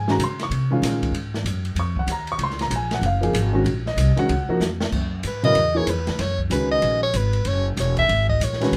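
An intimate grand piano with audible action noise and a woody pizzicato upright bass open this brisk, open and hypnotic modal jazz excerpt at 190 BPM in swung 4/4, joined at once by a dark, boomy small-room drum kit whose fill at 4.6 seconds leads into F# mixolydian, where a bright, breathy soprano saxophone with vibrato enters up front at 5.3 seconds for its solo over light reverb.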